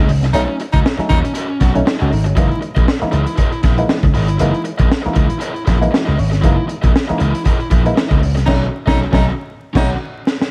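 Riding a 118 BPM groove in 4/4 with a light swing on the sixteenths, this playful, gritty funk excerpt in F# mixolydian is driven by a crunchy breakbeat kit with a punchy kick, high-tuned snare and dark cymbals, sitting up front from 0.1 seconds through to a drum fill at 10.0 seconds. A growly, amped slap bass anchors the low end while an overdriven, picked garage guitar and a stringy, muted clav with phaser fill the middle, the clav adding a short fill at 5.7 seconds. A clear, soft-attack baritone saxophone speaks briefly at 0.3 seconds as the band hits accents over B9, the harmony shifting to a rootless F#13 at 2.4 seconds, and the sax returns at 8.5 seconds as the band accents a return to B9. The dark production carries light small-room reverb and a patina of vinyl crackle.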